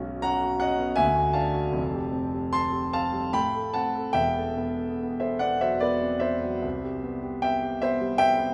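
Impressionist classical solo piano in a serene, hazy mood, moving in a rubato 3/4 at around 72-81 BPM, tuned slightly low to A4 = 439 Hz. A warm concert grand sits up front with a deep bass, open tone and long sustain, spanning E1 to C6 as it drifts through colored chords such as Badd9, Fadd9, Am9 and Em11 before settling on Cmaj7 at 6.6 seconds. A wet concert hall reverb with a 2.3-second tail surrounds this brief 8.5-second fragment of a longer piece.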